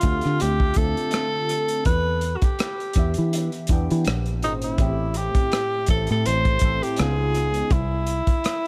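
A crunchy, gritty breakbeat kit of hi-hat, tight kick and rim click swings lightly beside a punchy, foam-muted fingered electric bass in this sultry, soulful neo-soul R&B excerpt, while a bright, barky tine electric piano colored by phaser and tape echo accompanies chords moving from Dm9 to C#9, and a breathy, subtone tenor saxophone with light vibrato and scooped notes carries an up-front melody through tape echo in an echo-heavy small room.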